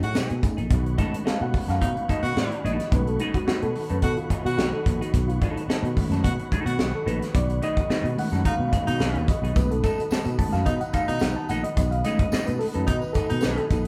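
A straight 4/4 funk groove at 108 BPM in B mixolydian opens on a B13 band accent before a reedy electric piano with fast tremolo takes the solo from 0.7 s, over a tight, up-front drum kit with a high-tuned snare, a growly fretless bass, a dark, clean semi-hollow guitar through a phaser, a bright baritone saxophone second line with scooped notes, a tonewheel organ entering at 0.7 s with smooth sustained chords, chorus vibrato and key click, and a jingly tambourine in the background, all captured playing live in one room with moderate large studio reverb for a funky, playful feel.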